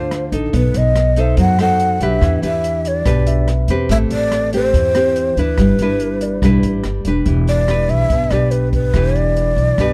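Wistful and smooth, this short bossa nova excerpt moves at 143 BPM in a straight 4/4, cut from a longer piece. A breathy, mellow shakuhachi carries the melody up front, its bamboo tone marked by vibrato and a soft attack, while a full-bodied nylon-string guitar, fingerpicked in a classical manner, sits close beside it as accompaniment. Beneath them, a woody pizzicato upright bass holds the low end, and an open jazz kit with a boomy kick, hi-hat and rim click plays from a small, dark-sounding room with a rolled-off top. Between 2.0 and 7.3 seconds, a grand piano adds intimate background touches, its action noise faintly audible. The harmony drifts from a rootless G7sus4 and B7b9 through Em7 and Am9, returning to Em7 as a new section begins at 7.3 seconds, all in a dry, warm, dark production.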